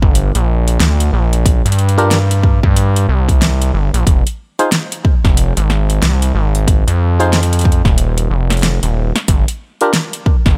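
A punchy, up-front mix in a digital ambience opens this playful, swaggering glitch hop excerpt, cut from a longer piece and moving at 92 BPM in 4/4 with a swung sixteenth-note feel in F dorian. A gritty, saturated synth bass drives the low end from the start, its sawtooth bite, oscillator sync and resonant filter pluck giving it an aggressive edge between Eb1 and G2. Alongside it, a tape-warm electronic kick sits prominently, joined at 0.2 seconds by a layered pop drum kit with a fat snare and metallic hi-hats. At 2.0 seconds a muted clav enters with bright, twangy, stringy stabs, treated with auto-wah, sidechain pumping, a low-pass filter and dub echo. The harmony moves from Gm to Fm7 at 4.1 seconds before the chords fall away at 9.3 seconds, and once the clav drops out at 9.9 seconds, bass and drums carry the groove to the end.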